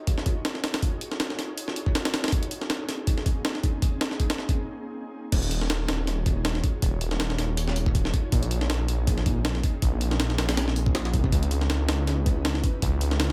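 A dry, close-up mix puts both parts up front in this dark, nostalgic drum and bass cut taken from a longer jungle track. A sampler-style kit opens the piece on its own, its pitched-up, compressed break carrying a gritty edge, with a thumpy kick, a high-tuned snare, hi-hat and crash, all sounding as if re-recorded in a large room. The drums swing lightly on the sixteenths through a build-up that gives way to a short break at 4.6 seconds. At 5.3 seconds the drop arrives with a detuned saw bass, thick and menacing, its beating tone blending sawtooth and sine into something oddly mellow. With a fast attack and sustained notes sitting low in the register, the bass holds down the bottom beneath the drums until the cut ends.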